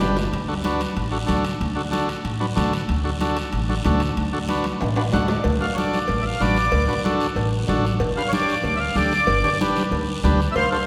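Danceable and festive, this brief cut from a longer cumbia moves at a brisk 188 BPM in D major, its harmony resting on D before shifting to G at 8.0 seconds. An overdriven, buzzy combo organ sits up front with a vintage edge, carrying the accompaniment alongside a woody, thumpy upright bass plucked on gut strings. Behind them, bright thin-skinned congas and ringing metal-shell timbales and cowbell keep the percussion bustling in the background, joined by a raspy, band-limited guiro. A drum fill opens the piece, and another drum fill around 4.8 seconds is joined by a brief organ fill at 5.0 seconds to hand off to the second half. At 5.6 seconds a reedy, dark, smooth accordion steps forward for a full, rich solo that carries the melody to the end. The whole band sits in the long, wet reverb of a church or concert hall, lending the dance a spacious glow.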